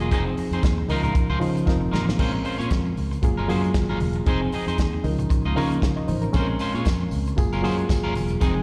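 A swung sixteenth-note groove at 116 BPM in 4/4 drives this glamorous, sultry disco excerpt in Bb minor, cut from a longer piece and heard as a live gig through a venue's PA with recital hall reverb and small room ambience. The soul drum kit sits up front with a tight kick, medium-tuned snare, dark cymbals and a rolled-off top in a dry, pumping room, and a drum fill at 1.7 seconds carries the music into its second section. A fingered electric bass, direct and amped, holds the low end beneath a reedy electric piano, lightly overdriven through built-in speakers with slapback echo, which also stands up front. A twangy electric guitar at the edge of break-up adds accompaniment bathed in spring reverb and slapback echo, while low-tuned, thick-skinned congas stay very quiet and close. The harmony moves through lush chords like Fm7, Db69, Bbm9 and Gbmaj9, and a jingly, vintage tambourine joins in the background at 6.3 seconds.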